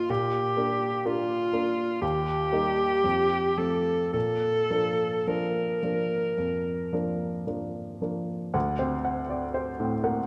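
A wet, spacious scoring-stage reverb surrounds this serene, tender romantic classical duo in Bb major, moving at a rubato 53-63 BPM in 4/4. A distant, roomy alto saxophone with light vibrato sings the melody in its middle range over an intimate baby grand piano, whose short sustain and audible action noise give it a natural, close-up presence. The harmony settles through Bb, Eb and F before the saxophone falls silent at 7.5 s, leaving the piano to carry a new passage that turns to D7 at 8.5 s.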